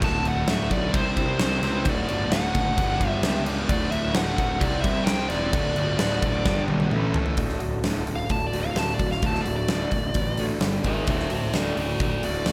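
A quiet-loud alternative rock passage in straight 4/4, cathartic and anthemic, cut from a longer piece and carrying a big arena sound in a moderate hall-like reverb. A huge acoustic drum kit sits up front with a fat snare, punchy kick and bright cymbals in a pumping room, and a drum fill from 6.5 to 7.4 seconds leads into the second section. Two fuzz guitars drive the riff in the background, one bright and compressed with slapback echo and the other dark and thick, which drops out at 7.4 seconds. A growly, overdriven fuzz bass picks out the low end beneath them. A dark, smooth overdriven lead guitar with slapback echo carries the melody throughout and moves into a solo from 7.4 seconds, just as a woody, boxy acoustic archtop with old strings enters in the background with picked arpeggios.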